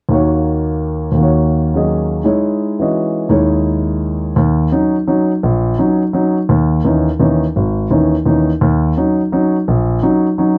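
Swung eighths in a lilting three-four drive this brief, hypnotic jazz fragment, cut from a longer piece, where a warm, up-front solo grand piano spans from deep Ab1 bass to Eb5, circling spiritual Ebm7 and Dbmadd9 harmonies under light reverb in a dry, close 1970s-style studio sound, shifting to its second section at 4.4 seconds.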